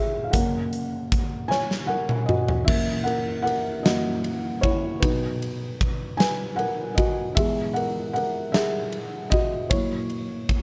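A dry recording cut from a longer piece, this heartfelt, swaying pop ballad moves in a slow 6/8 at 51 BPM, tuned to A4 = 438 Hz. A felt-muted upright piano, dark and boxy with its action noise audible, carries the accompaniment and a solo throughout. A huge acoustic arena kit enters at 0.3 seconds with punchy kick, medium-tuned snare, toms, hi-hat, ride and bright crash in a pumping hall, playing a fill from 1.5 to 2.7 seconds, while both parts sit up front as the harmony moves from F# through F#7, B and E back to F#7.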